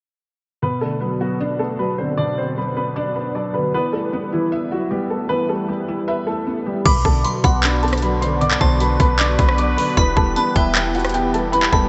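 Brooding and melancholic, this half-time trap and hip hop passage at 154 BPM in B phrygian opens with a worn baby grand piano carrying the melody over a soft, felt-muted upright piano whose action noise sits close and intimate, both bathed in chorus and a huge, dreamy reverb that keeps the top end dark. At 6.9 seconds a crystalline FM synth bell adds a second line, a detuned sawtooth pad warbles in the background with sustained chords, a deep, boomy sine 808 bass arrives, and an overdriven trap kit pushes up front with a hard-clipped kick, metallic hi-hats, handclaps, rim clicks and crash cymbal. The chords move between Bm and Em in this brief cut from a longer piece.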